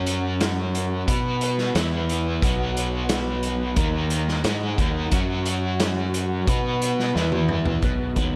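Hypnotic and kaleidoscopic, this short psychedelic rock excerpt sets a biting, double-tracked overdriven guitar riff with harmonic tremolo and a round, fuzzy fingered bass up front over a punchy vintage drum kit in a pumping small room, with a reedy combo organ holding heavily vibratoed chords in the background, a drum fill at 7.1 seconds, and a dark, clean lap steel slide note with analog delay entering at 7.8 seconds.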